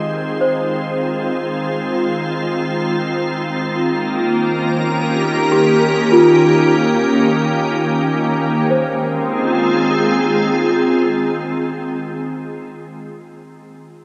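Bathed in a vast, echoing cathedral reverb, this serene, reflective ambient fragment in F minor drifts in free time as a pure, bright organ-like pad with ensemble chorus holds sustained chords moving from Ab through Eb7 to Fm7, while a worn, slightly out-of-tune celesta with mellow felt hammers plays delicate, bell-like arpeggios through diffuse delay in the background, ringing on alone after the pad stops at 11.9 seconds until 13.7 seconds.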